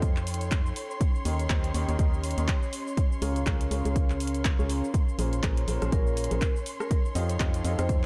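An energetic, bittersweet piano house groove opens at once at 122 BPM in Bb dorian, with a punchy, overdriven electronic kick sitting up front alongside an analog drum machine that supplies handclaps, hi-hat, rim click and shaker with a 16th-note swing. Beneath it, a hollow, organ-like FM bass with a fast, decaying attack anchors the low end, pumping against the kick along with a clear, woody upright piano riff that has a vintage, short-sustained character. Lush, bowed violins hold sustained chords with vibrato, while a warbling, lo-fi tape-like pad drifts in the background, detuned and mellow under chorus and its own reverb. The harmony moves through F9, Eb7, Db6 and Bbm9 before returning to F9. At 5.9 seconds a vibraphone struck with hard mallets adds a short, metallic, ringing melody with a slow motor vibrato, trailed by digital delay. The production is dark and dry, and this brief cut from a longer piece runs just over 8 seconds.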